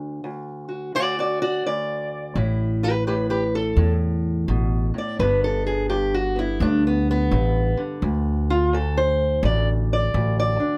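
A fingerpicked steel-string acoustic guitar leads this short cut from a longer acoustic country blues piece, its dark, boxy parlour tone sitting up front as it carries the melody across a range from D2 to D5 for the full 10.8 seconds. The mood is rollicking and gritty, moving at 85 BPM in 4/4 with a swung eighth-note feel in D major. An upright bass joins at 2.4 seconds, played pizzicato on steel strings with a woody, warm sound placed up front, holding the low end between G1 and E2 until 10.6 seconds. The harmony moves from D to A5, then G, and lands on D5 near the close. A light reverb gives the duo a small sense of space.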